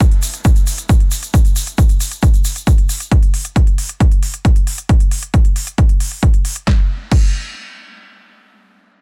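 A dense, heavily limited modern master with digital ambience frames this bittersweet, driving slice of uplifting trance at 135 BPM in a straight 4/4. An up-front, tape-warm analog kick anchors the groove, joined by a layered, overdriven dance kit with a punchy snare, crisp hi-hats and crash cymbal, while a grainy, bright acoustic tube shaker adds small-room texture until 3.1 seconds. The drums carry on past the shift into a new section at 6.7 seconds and drop out at 7.2 seconds.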